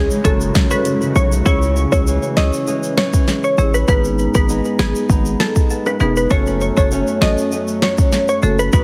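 A glassy, chorused wavetable pluck with digital delay carries the melody over thumb-plucked flamenco guitar arpeggios with finger squeak and a punchy, heavy 808-style bass from the very start of this tough, sultry 99 BPM dancehall cut in C# minor, while a cloudy, mellow granular pad holds chords in the background only from 0.1 to 1.4 seconds, and warm tube shaker and timbales, a mid-forward marimba struck with medium hard mallets, and an up-front electronic pop kit with a fat snare fill out the groove under light reverb and a heavily compressed radio sound.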